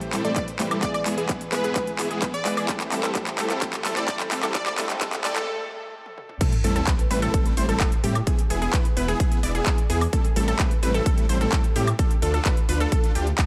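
Opening with a clean, picked electric guitar under chorus and dub echo, quiet bowed chamber strings, a filter-swept lush pluck arpeggio, a huge detuned supersaw riff, a catchy plucky lead and a punchy up-front kick, this emotional, anthemic festival progressive house excerpt in A minor at 129 BPM builds over drum fills and a riser through a short break, then drops at 6.4 seconds with an impact as a thick, menacing tube-saturated saw bass pumps beneath the crisp-hatted big-room kit, cycling Am7, E and Dm.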